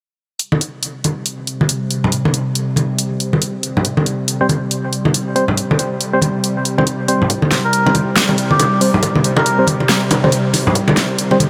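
A half-time deep dubstep groove at 139 BPM with 16th-note swing opens at 0.4 seconds, as up-front congas with hard hands and a deep house kit's hi-hat and fat snare sit under a tense, string-like drone on sustained C chords that carries a filter sweep through the opening section, with a hollow, dark organ stab entering at 4.4 seconds through chorus and dub echo. At 7.3 seconds the brooding, heavy cut from a longer piece starts to build: a punchy background kick and a very quiet, saturated sub bass arrive, the stab takes on a filter sweep, and from 7.6 seconds a reedy, breathy melodica with 12-bit sampler grit and dub echo plays a short phrase. Light reverb gives the whole a modest sense of space.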